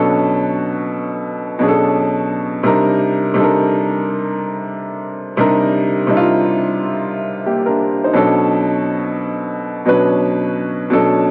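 Hip hop with a moody, tough feel and a 16th-note swing, built on a lone upright piano that plays by itself for the full 11.3 seconds of this fragment cut from a longer piece. The piano sits up front with a woody, natural tone, filtered at both ends, moving through ninth chords from Bm9 to Cm9 and back to Bm9 at 8.2 seconds. Light reverb and studio ambience surround a dry, gritty hardware sound marked by lossy compression artefacts.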